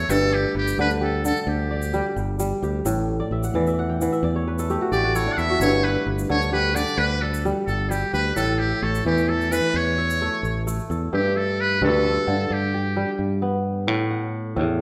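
West African traditional string and xylophone music in a flowing, warm 12/8 feel, cut from a longer piece, with a crisp, ringing fingerpicked kora spinning arpeggios up front and breaking into a fill from 3.2 to 5.6 seconds. A buzzy, thin trumpet with a metal mute carries the jazz-style solo melody with light vibrato until 13.2 seconds, while a growly fingered electric bass anchors the low end and a grainy egg shaker sits close until 11.0 seconds. A wet recital hall reverb lends the whole a roomy glow as the music moves from its opening section into a brief closing one.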